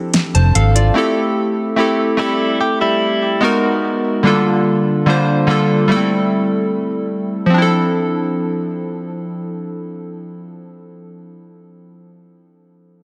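Late-night and sensual, this contemporary R&B excerpt at 73 BPM rests on round, detuned analog keys with chorus and filter sweeps running through its 13 seconds, while a fat-snared, overdriven electronic drum kit with metallic hats and gritty sampler texture and a dark, foam-muted fingered bass appear only briefly at the start, and a clean, compressed direct-recorded electric guitar plays chorused, delayed arpeggios from 2.2 to 3.4 seconds over chords moving from Dm7 through G#m9 and Gm9/D, framed by light digital reverb and a dense, heavily limited master.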